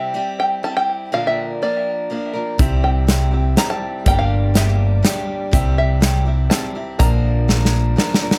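A twangy, plunky banjo carries the melody over a picked parlour steel-string acoustic guitar with fresh strings from 0.0 seconds, opening this uplifting, anthemic indie folk excerpt in 3/4 at 122 BPM in C mixolydian, with dub echo trailing the banjo. At 2.6 seconds the arrangement builds as a dark, round fingered electric bass and an airy, polished country drum kit with a punchy kick come in up front, while a smooth, vintage grand piano with its own dub echo sits in the background. The studio reverb gives the mix an echo-heavy sheen, and a drum fill at 7.5 seconds leads toward the cut.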